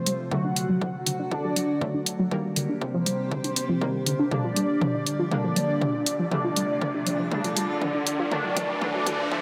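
A punchy analog drum machine sits up front with congas, hi-hat and toms pumping under sidechain, joined by a small-room electronic kick, in this dark, melancholic melodic techno build-up at 120 BPM in G minor, cut from a longer piece. A juicy, resonant, ring-modulated polysynth carries the melody while a warbly, dusty lo-fi pluck plays arpeggios. Above them sits a smooth, detuned supersaw line, with brassy synth stabs and a bright, morphing wavetable pad in the background, all over D, Eb, Gm and F chords. Filter sweeps run through the pluck, polysynth, supersaw and stabs, a drum fill begins at 4.3 seconds, and an electronic riser enters at 5.7 seconds, all bathed in a huge ambient reverb.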